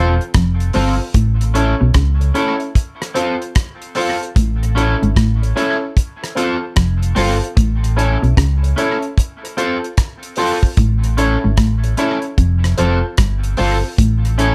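A round, dark fingered electric bass sits up front in this laid-back, uplifting roots reggae excerpt, moving low beneath a steady alternation between F and A chords with a swung sixteenth-note feel. The damped 70s drum kit joins at 0.2 s, its dry, airy hi-hat, rim click and tight kick sounding polished and close. A clean, hollow-body semi-hollow electric guitar plays a dark, fingered riff in its low register until 14.2 s. Above it, a second electric guitar at the edge of break-up adds a slightly broken-up, twangy picked accompaniment colored by subtle chorus and tape echo. A warm, woody upright piano punctuates the groove with stabs, and light reverb gives the whole mix a gentle sense of space.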